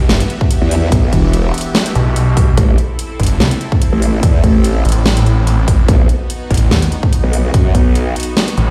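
A saturated, wobbling growl bass with chorus and overdrive sits up front from 0.6 seconds, alongside a snarling, detuned sawtooth bass thick with distortion, giving this cut from a longer heavy wobble dubstep track an aggressive, half-time swagger over an Emadd9, Am and B progression. Underneath, a lush supersaw pad holds sustained chords through a phaser with sidechain pumping, while a punchy, tape-warm electronic kick enters at 0.4 seconds and a layered dubstep kit adds a huge snare and metallic hi-hats, both in small room ambience. The mix is loud and dense, as if played on a big sound system in a bare room.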